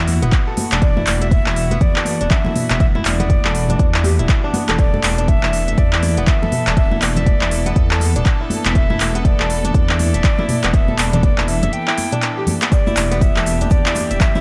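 A light reverb gives this earthy, hypnotic afro house cut an open but close-knit feel, with the deep, tape-warm electronic kick sitting up front at 121 BPM in 4/4 and a 16th-note swing. A dark, detuned sawtooth bass rumbles and beats underneath with sidechain pumping, while a deep house kit of handclaps, smooth hi-hats and toms, re-recorded in a small room, joins the congas, which sit in the background. Over an Em9 chord in E minor, a fingerpicked kora rings out crisp arpeggios roughened by vintage 12-bit sampler grit, pumping and trailing delay. A chamber string section holds soft, sul tasto chords with light vibrato in the background, also pumping to the kick. A breathy, bright metal flute carries the expressive, close-miked melody between D5 and G5, echoed by delay. After a short break from 11.7 to 12.7 seconds, a grainy, very quiet tube shaker enters at 12.7 seconds as the excerpt runs on.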